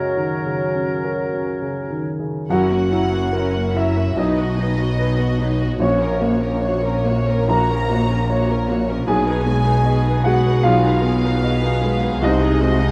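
Classical romantic writing for piano and orchestra, this lush, lyrical passage moves at 74 BPM in 4/4 in F# major, its beats stretched and pulled with rubato. An open-sounding baby grand piano carries the melody up front throughout, its long sustain ringing across a span from A#1 to A#5. For the first couple of seconds it is joined by a brief wind chord: a clear oboe with light vibrato, a pure, straight-toned flute, a mellow and distant clarinet, and a smooth-topped bassoon underneath. At 2.5 s the strings take over the support, with two violin sections playing sul tasto, one floating and pure in the background, the other rich and intimate with gentle vibrato above it. Woody, dark violas fill in the middle, while cellos and double basses anchor the low end with soft-attacked bowed notes. The harmony travels from F# through F#7, B, F#/A# and G#m/B before arriving on G#7/B# at 12.2 s, all set in a dark, warm production with a moderate recital-hall reverb.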